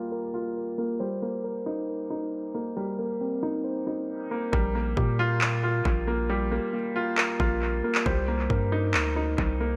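An intimate concert grand piano, up front with audible action noise and deep bass, provides the accompaniment in this dark, eerie half-time trap excerpt. A mellow, clean tine electric piano plays arpeggios alongside it, and both are dulled by a low-pass filter and trailed by analog delay through an opening filter sweep. At 4.5 seconds, a long, sine-toned 808-style bass with a fast attack arrives up front with an electronic trap kit of handclaps and a hard-clipped kick re-recorded in a small room, all set in an echo-heavy mix with light reverb and an overall low-pass filter.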